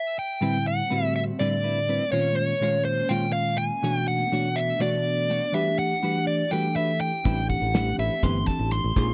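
Slick and driving, this electric jazz fusion passage, cut from a longer piece, runs at 246 BPM counted in eighths in an odd 7/8 metre with a straight feel, centred on A dorian. It opens with a band accent as a dark, smooth lead guitar with overdrive takes up the picked melody up front, while a bell-like tine electric piano bathed in lush chorus supplies bright, clean accompaniment. A semi-hollow electric guitar adds compressed, picked stabs through analog chorus, and an airy, breathy pad holds soft, very quiet sustained chords with a slow attack and long release. The harmony moves through minor ninth chords, Am9, Bbm9, Bm9 and Em9, returning to Am9 at 7.3 seconds, where a growly, punchy fingered bass and a damped 70s drum kit with a fat snare and tight kick come in together. The sound is dry and close, with little reverb, in the manner of a 1970s studio recording.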